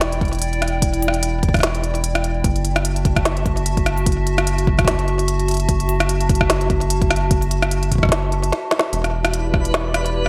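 Intricate and glitchy, this IDM excerpt moves at 148 BPM with a swung 16th-note feel, built on a warbling, nostalgic pad of detuned, lo-fi chords with chorus and vintage sampler grit, over an up-front rubbery, nasal square bass that pivots from Em7 to F#m7. An organic electronic drum kit with a woody snare, smooth hats and rim clicks, overdriven and fed through digital delay, sits up front beside a deep, overdriven electronic kick, and a drum fill at 8.5 seconds leads back to Em7. At 9.4 seconds a twinkling granular texture with octave-up shimmer enters, all framed by light reverb and bright 1980s-style digital production.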